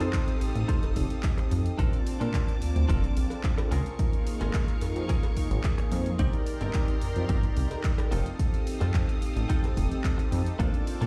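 Heard through a big sound system in a bare room with large studio reverb, this sleek, cosmic nu-disco cut at 109 BPM in straight 4/4 sets a punchy, up-front electronic kick and a glossy, pulse-width-modulated synth bass under a smooth, detuned analog pad and a focused, bowed violin section, both pumping with the sidechain, while a twangy, scooped clean electric guitar picks a riff through subtle chorus and analog delay, a house kit adds handclaps and tape-warm hi-hats, and a vintage, band-limited cowbell sits in the background until 9.8 s over chords moving from F7 through Bbmaj7, Db6 and Cm7 back to F7.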